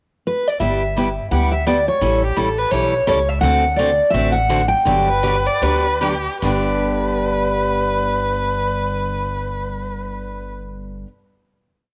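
Drenched in wet spring reverb, this charming, lively jazz manouche miniature in G major swings at 145-171 BPM, with a bright, up-front dreadnought guitar picking a motif-based melody from 0.3 s while a parlour guitar picks short four-to-the-bar chords accented on two and four, a woody, growly upright bass plucks two-beat root-and-fifth lines with walk-ups, and from 2.2 s a warm bowed violin with vibrato and portamento answers in the melody's rests, before the tempo slows from 3.4 s into a final G chord held until 9.7 s.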